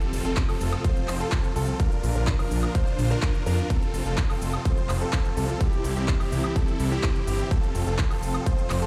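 Triumphant and anthemic, this festival progressive house excerpt drives along at 126 BPM in a straight 4/4, moving through F, Bb, F, C and back to F in F major. The detuned saw bass sits up front, thick, saturated and menacing with a beating edge, pumping against the punchy, tape-colored electronic kick that enters at 0.4 seconds and sits up front as well. Over them, huge, bright supersaw chords play a riff treated with phaser, delay and sidechain pumping, while a grand piano adds intimate arpeggios in a high register, its action noise audible and its notes echoed by delay. A lush, warbling vintage pad holds slow-blooming chords in the background, thickened by chorus and breathing with the same pumping. The big-room dance kit fills out the groove with crisp hi-hats, handclaps, shaker and woodblock, and the whole track carries little reverb of its own yet sounds as if played through a big sound system in a bare stone room.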